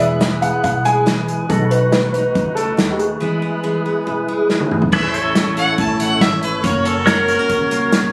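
A clear, earthy fiddle with light vibrato and a smooth top stands out in this short honky-tonk and classic country excerpt, bowed up front as it carries the melody from 5.6 seconds. Before it, a dark, mellow upright piano takes a solo at the opening, leading into a break at 3.2 seconds and a drum fill at 4.5 seconds. The unplugged kit, played with bundle sticks in a small room, keeps a straight 4/4 at 140 BPM with a tight kick, medium-tuned snare, hi-hat, toms and crash, while a woody, thumpy pizzicato upright bass on gut strings anchors the low end. A bright, full-bodied picked dreadnought acoustic guitar and a fat, lightly overdriven tonewheel organ with key click, percussive third harmonic, chorus vibrato and slow rotary speaker fill in the accompaniment in A major. From 4.9 seconds a clean, twangy pedal steel played with fingerpicks adds sustained chords with volume swells and slide, giving the heartfelt, easygoing tune a club-room glow under light reverb.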